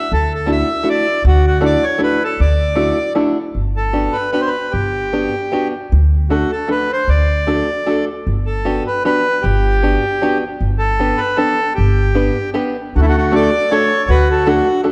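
A lilting three-beat waltz with a gentle swing drives this whirling, charming musette piece, cut from a longer performance. The accordion carries the melody up front with a reedy, full voice and a dry tuning, while the upright bass, also prominent, plays pizzicato lines that sound woody and growly on steel strings. An open-back banjo, fingerpicked and twangy with a plunky, percussive edge, fills in the accompaniment just behind them. The harmony moves through rich major-seventh colours before the opening theme returns at 12.9 seconds, when a clear, classical-style clarinet slips in as a soft second line in the background. A moderate recital-hall reverb and a dark production give the whole recording a rounded, intimate glow.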